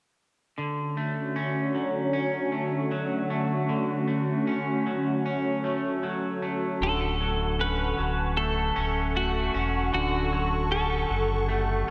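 Dream pop at 77 BPM in D major, blissful and dreamy, cut from a longer piece and soaked in a lush hall reverb. A swirling, detuned sawtooth pad with phaser and chorus holds a sustained Dmaj7 from 0.6 seconds, while a slightly broken-up, twangy electric guitar picks arpeggios through lush chorus and tape echo. At 6.8 seconds a bright, compressed clean guitar enters with a melody over a deep sine sub bass with octave.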